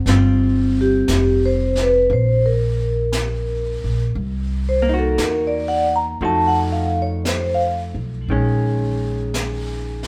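At a slow 58 BPM in 4/4 with a gentle swing on the eighths, this tender, late-night jazz ballad excerpt rests on a woody pizzicato upright bass and a distant, roomy brush kit with a high-tuned snare, while a clean, compressed hollow-body electric guitar comps up front through Gm7, Cm7b5, F7b9 and Bbm7. The soft-mallet vibraphone carries the melody from 0.8 to 7.8 seconds, its metallic, ringing tone shimmering with a slow motor vibrato and sitting mellow and forward in the mix. The band plays live together in a moderate stone room whose one-second reverb lends the performance a natural, intimate depth.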